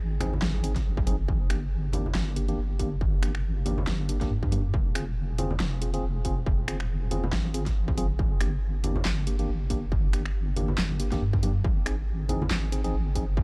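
Dark and meditative, this deep dubstep excerpt moves at 139 BPM in a swung half-time feel in G phrygian, where a deep, detuned wobble bass with chorus sits up front beside a distorted electronic kick entering at 0.8 seconds, while a huge-snared drum kit with bright hats, finger snaps and handclaps, ringing background congas and mellow tine electric piano stabs with dub echo circle through Ab, Gm and Fm in a dark, warm production.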